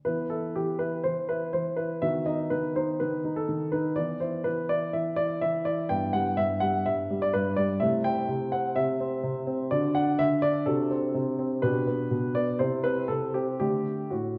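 Elegant and graceful, this short excerpt from a classical-period piano sonatina in E minor unfolds at 124 BPM in 4/4 with a rubato feel, its solo grand piano sounding present, polished and up front from G2 to G5 as it moves through chords from B/D# and Em/G toward G/B, C and D in a dark production wrapped in a wet recital hall reverb.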